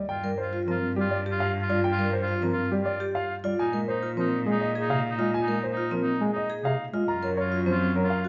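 In a straight 3/4 pulse, this urgent yet meditative minimalist classical pattern piece sets an intimate grand piano melody, with its audible action noise, over a mellow, distant bass clarinet accompaniment, a light-vibrato oboe second line, and a focused, bowed single-player cello bass up front, while bright, metallic vibraphone arpeggios ring with a medium motor vibrato, all moving from G7(no3) through Bb7sus4 to Gbmaj7 in a moderate recital hall reverb captured by close, detailed microphones.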